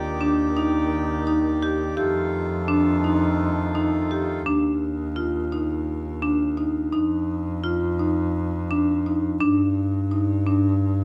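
A light reverb colours this short cut from a longer contemporary chamber piece, its restless, hypnotic mood set by a straight 7/8 pulse at 170 BPM in eighths and tuning at A4 = 439 Hz. A bowed double bass, played by one player, sits up front with a rich, focused tone and vibrato, holding the low register from the start through 11.0 seconds. Entering at 0.2 seconds, a marimba struck with medium hard mallets spins up-front arpeggios in its middle range, its tone warm. A hand-pumped harmonium breathes reedy, nasal sustained chords underneath in the opening bars, moving from Ebmaj7 to F9 before it stops at 4.4 seconds. The rest of the passage leaves bass and marimba to carry the music through an unharmonised stretch, then Ebsus2/F and a bare G5, keeping the uneven pulse circling to the end.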